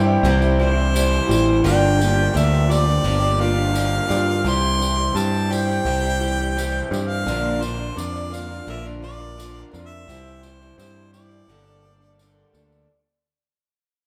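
Wistful and reflective, this folk rock and heartland rock passage in G dorian moves at an unhurried 85 BPM in straight 4/4, with a clear harmonica carrying the melody up front with light vibrato while a round, direct picked electric bass anchors the low end. A slightly broken-up, lo-fi electric guitar plays a riff through spring reverb, a shimmering, octave-doubled twelve-string acoustic guitar picks accompaniment in the background, a reedy accordion holds full sustained chords, and a jingly tambourine sits softly behind them. The band plays live in one room under a wet large studio reverb, cycling through C, Gm7 and Bb before resolving to Gmadd9 at 11.5 seconds, with the whole passage fading out across its length.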